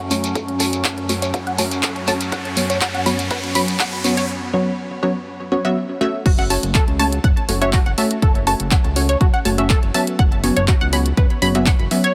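An overdriven, punchy electronic kick sits up front in this bittersweet, expansive progressive house excerpt at 122 BPM, where a small-room pop kit of crash, handclaps and hi-hat joins a build-up of a warbling, morphing wavetable pad, a riser, grainy shekere, filter-swept sequenced sawtooth arpeggios with phaser and tape echo, and lush filter-swept unison pluck stabs over F#m and Bsus2/F# chords; the pad, riser and shekere stop at 4.3 seconds for a break, and at 6.3 seconds a fat, detuned analog bass arrives for the drop alongside the arpeggios, pluck and drums.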